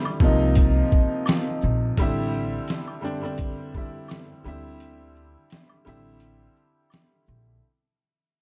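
A gritty, pitched-down sampler-style drum kit sits up front in this melancholic, nostalgic lo-fi hip hop piece, its thumpy kick, medium-tuned snare, hi-hat and shaker lightly swung beneath a pizzicato upright bass with a woody, steel-stringed tone. A clear but worn, slightly detuned upright piano, filtered through cassette tape, moves through Cm7, Am7 and D9sus4 while woodblock and egg shaker tick quietly in the background. The dark small-room production fades out throughout, easing into a break at 4.8 seconds as this cut from a longer track closes.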